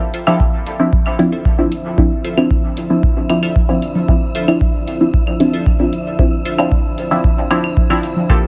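Light reverb and a digital ambience surround this deep, hypnotic dub techno excerpt at 114 BPM in D minor, resting on a single Dm9 chord, where a muted, detuned sawtooth dub chord stab with filter sweep, phaser and dub echo sits up front, metallic electronic hi-hats join at 0.1 s, a moody, mellow pad with chorus and sidechain pumping enters at 0.3 s, a deep analog kick lands up front at 0.4 s, tape-warm claves and congas stay in the background, a breathy, wind-like tuned noise texture drifts in at 0.9 s, and a crisp, bright wavetable chord stab with dub echo plays a background riff until 6.6 s.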